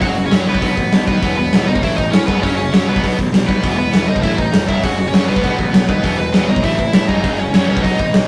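Rebellious and rowdy, this short cut from a longer punk rock piece charges along at 199 BPM in a straight 4/4, with an up-front acoustic drum kit of punchy kick, medium-tuned snare and hi-hat ringing in a big room, while a bright overdriven semi-hollow guitar carries the picked melody over a double-tracked, distorted rhythm guitar riff and a growly fuzz-picked electric bass sitting in the background, all cycling through B, E5, A and F#5 chords in a rough rehearsal-room sound with light reverb.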